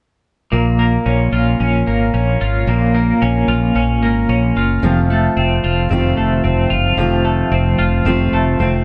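A bright, twangy twelve-string electric guitar with tremolo plays clean, compressed arpeggios up front from 0.5 s over a round, dark fretless bass, and a full-bodied fingerpicked jumbo acoustic guitar with audible finger squeak joins at 4.8 s as the harmony moves from Bbm to F7 in this bittersweet, wistful indie pop fragment at 111 BPM in Bb minor, bathed in moderate spring reverb.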